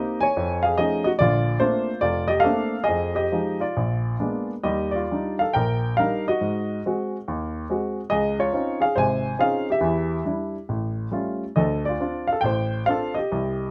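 A baby grand piano plays alone from the first moment, its worn, intimate tone sitting up front with the noise of its action audible beneath the notes. This sophisticated solo jazz passage in Bb major moves at 140 BPM in 4/4 with a swung, rubato feel, spanning from F1 up to Ab5 under a light reverb. Rich chords such as F7alt, Bbmaj9, Dbmaj9 and Aaug7 colour the harmony, with a new section opening at 4.7 seconds before the fragment, cut from a longer piece, ends at 13.7 seconds.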